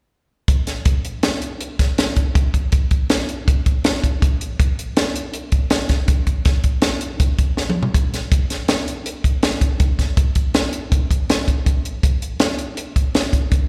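Intricate and bright, this rock excerpt runs at 161 BPM in an odd 5/4 metre with a straight feel. A compact cocktail drum kit carries the whole excerpt from 0.5 to 13.6 seconds, working through hi-hat, kick drum, snare drum and toms. The kit sounds acoustic and dry, with a high-tuned snare and a punchy kick sitting up front, while a slapback echo trails each hit. A short drum fill around 7.6 seconds breaks up the single section before the groove carries on. The performance comes from a live gig heard through the venue's PA, with light reverb and the open ambience of a recital hall around the drums.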